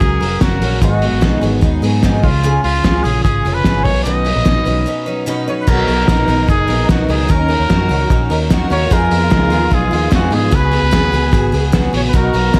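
A light reverb frames this bittersweet, restless jangly indie pop excerpt at 148 BPM, where a clear trumpet with scooped notes carries the melody over a shimmering, octave-doubled twelve-string acoustic guitar, dark clean electric guitar arpeggios, a round foam-muted bass and a cloth-damped, thuddy drum kit with gritty sampler saturation and gated reverb, pausing for a break at 4.9 seconds before a lush, bowed violin section joins in the background at 5.7 seconds over chords moving from Bmaj7 to Db7sus4.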